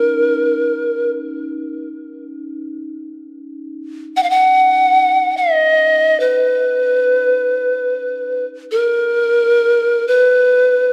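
Unfolding in free time, this spacious, meditative world piece cut from a longer work sets an airy, woody pan flute up front, its tongued notes carrying chiff and vibrato across the whole 10.9 seconds. Beneath it, a bronze singing bowl struck with a felt mallet rings softly with mellow, metallic tone and slow beating until 5.2 seconds. A wet recital-hall reverb gives the dark production a sense of open space.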